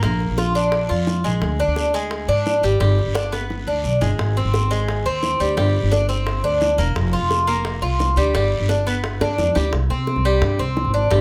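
This nostalgic Cuban son and guajira excerpt opens with a bright, metallic Cuban tres picking arpeggios on its doubled strings, some of them octave-doubled. Beside it sits a woody, dark pizzicato upright bass on steel strings, both placed up front. The tempo is a lively 173 BPM in a straight 4/4. Tight, high-tuned bongos played with soft hands carry a live-room feel, and they add a drum fill around 3.2 seconds and again just before the new section. Further back, a raspy, compressed and saturated guiro scrapes along until it drops out at 9.7 seconds, where a short new section settles on a C5 chord after a drifting progression through Bb, G, Ab and suspended chords. Light reverb gives the acoustic ensemble a gentle, intimate glow.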